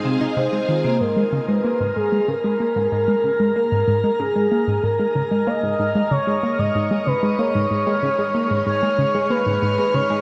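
Ambient, sequencer-driven space music in G# dorian at 94 BPM, this mysterious, expansive fragment of a longer piece moves in a straight 4/4 over dark, shimmering production. A tight, nasal sequenced synth drives the riff up front, its detuned sawtooth tone sharpened by a filter pluck, a moving notch, chorus and tape echo, while a filter sweep colours the synth sound through the opening second. Soft-mallet vibraphone adds brief metallic, ringing arpeggios with motor vibrato in the background at the very start. From 0.4 seconds an expressive portamento lead carries the melody up front, smooth and mellow with vibrato, chorus and tape echo. Beneath it a lush vintage string machine holds sustained chords, Abadd9 moving to G#sus2, fading in with its ensemble chorus as the second section unfolds. A bubbling, resonant stepped-filter texture enters at 1.2 seconds high above, its random filter steps trailing into its own reverb inside a long, wet shimmer reverb.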